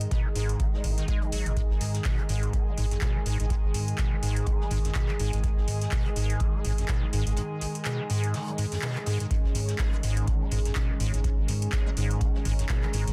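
A dense, heavily limited modern master with light reverb opens this gritty, trippy acid house excerpt, cut from a longer piece and riding a swung 4/4 groove. A deep, up-front electronic kick anchors the pulse, joined by a booming analog drum machine with metallic hats and handclaps that sounds tape-warm and re-recorded in a large room, while a dry, dark acoustic soul kit sits in the background with high-pass filtered hats and snare. Beneath them, a round, sine-like analog bass pumps against the kick, and a squelchy, resonant square-wave acid bass enters at 0.1 seconds with filter sweeps, ensemble chorus, cassette grit and dub echo. Above, a smooth, detuned sawtooth pad holds sustained chords with chorus and tremolo. Higher still, a warbling, nostalgic lo-fi pad adds mellow texture through phaser, chorus and its own reverb, both pads breathing with sidechain pumping.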